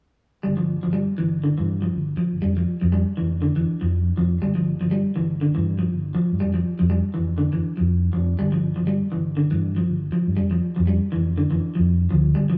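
A rough rehearsal-room recording with small room ambience and a wet studio reverb carries this defiant, funky afrobeat excerpt at 121 BPM with a light sixteenth-note swing, where a clean, hollow-body semi-hollow electric guitar with spring reverb picks arpeggios up front from 0.4 seconds and a round, amped fingered electric bass joins at 0.5 seconds, both riding a G5 to Fsus2 vamp that alternates every two seconds until 12.6 seconds.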